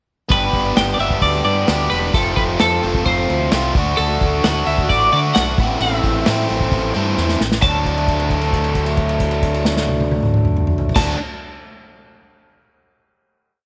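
Indie rock at 132 BPM in D mixolydian, upbeat yet wistful, this short whole piece runs a pre-chorus over G, F, D and Am before settling on a final D chord held from 7.6 seconds. A clean, compressed twelve-string electric guitar carries a motif-based melody through lush chorus and slapback echo, while a biting, double-tracked overdriven guitar rings out chords up front and a growling fingered bass, overdriven, drives eighth notes beneath. An airy acoustic kit played with bundle sticks, with punchy kick and a medium-tuned snare, holds a big rock groove and drops a fill at 7.2 seconds, all set in a moderate echo chamber reverb.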